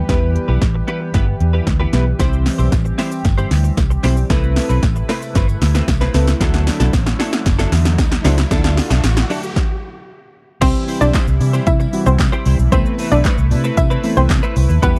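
A shimmering, retro pulse-width pad and a bright, clean, direct-recorded electric guitar riff open this energetic, confident dance-pop excerpt at 114 BPM in a straight 4/4. They are joined almost at once by soft, round electric-piano-like synth keys in the background, a dark, foam-muted fingered electric bass sitting up front, and a punchy deep house drum kit with kick, snare, handclaps, smooth hi-hat, shaker and crash. The pad, keys and bass all breathe with sidechain pumping, and a very quiet, jingly tambourine adds a faint acoustic sparkle. During the build-up, a drum fill runs over the chords Em, C, Amadd9 and Dadd9, and a background riser enters at 5.2 seconds. A stop arrives at 9.6 seconds before the drop lands at 10.6 seconds. There a hollow, nasal, bouncy square-wave pluck takes the melody with chorus and tape echo over C and Amadd9. The sound is dry and close, in the manner of a 1970s studio recording.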